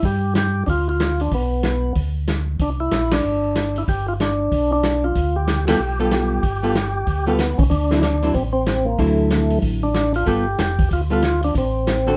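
A greasy, swinging soul jazz organ trio opens at once, cut from a longer piece, with a percussive tonewheel organ carrying the melody through a slow rotary speaker, its key click and second harmonic percussion sitting up front. Beneath it, a second tonewheel organ plays the bass line in a mellow, round tone with gentle vibrato from a stationary speaker. A vintage acoustic drum kit swings on hi-hat, ride, snare and kick, with dark cymbals, a tight kick and a rolled-off top end. The band hits shared accents at 3.1 and 5.6 seconds, and just after, at 5.7 seconds, a picked, hollow-bodied archtop guitar joins as clean, dusky accompaniment. The harmony moves through dominant and ninth chords before landing on a minor chord, and a wet studio reverb places the whole group a little further back in the room.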